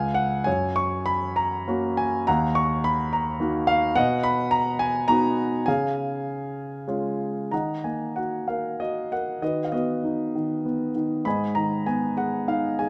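Bittersweet and brooding, this lyrical classical passage for solo grand piano moves in a flexible, rubato three-beat lilt, its harmony passing through F#, D#m, B and C# before turning to a new section at 7.5 s. The warm, up-front piano ranges from deep bass to the upper register and sits in a moderate recital hall reverb that gives it a gentle bloom. Cut from a longer work, the passage reaches an Abm chord at 11.3 s.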